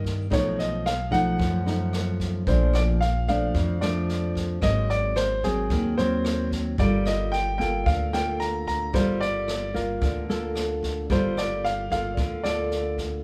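A straight bossa nova groove at 111 BPM in 4/4 sets a melancholic, wistful mood in G minor, heard here as a short cut from a longer piece. The open jazz drum kit keeps time with a boomy kick, rim clicks and a medium-tuned snare, sounding natural and a little recessed in its small-room setting. Alongside it, the pizzicato upright bass gives a woody, steel-strung low end, while the thumb-plucked nylon-string guitar sits up front with a classical, acoustic accompaniment. The grand piano carries the melody from 0.3 seconds, its warm, natural tone placed close to the listener in a high register. The harmony moves through B7#11, Bbmaj7, Ab9 and Gm9, and the opening passage returns at 11.1 seconds. Light reverb gives the feel of a band playing live together in one room.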